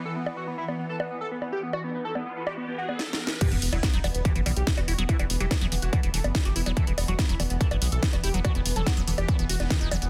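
Driving and alien, this psychedelic trance excerpt at 143 BPM in E minor opens with a morphing wavetable pad, a blurred granular cloud pad and a thick, detuned unison lead with phaser and delay over a techno drum kit of bongos, hi-hat, crash and cracking overdriven snare. Then a background riser and sub drop build to the drop at 3.4 seconds, which brings a distorted electronic kick drum, a deep, round analog bass, a squelchy, resonant liquid acid bass riff and a faint metallic, wobbling FM bass until 6.0 seconds, with the acid and FM basses pumping against the sidechain in a dense, heavily limited modern master.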